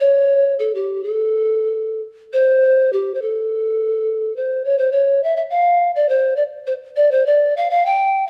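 A mellow, hollow pan flute with a crisp, chiffy attack and a pure, straight tone plays alone and up front through this earthy, melancholic Andean folk fragment in a straight 2/4, moving from its opening section into a second at 4.6 seconds, ringing in moderate recital hall reverb with lossy compression artefacts.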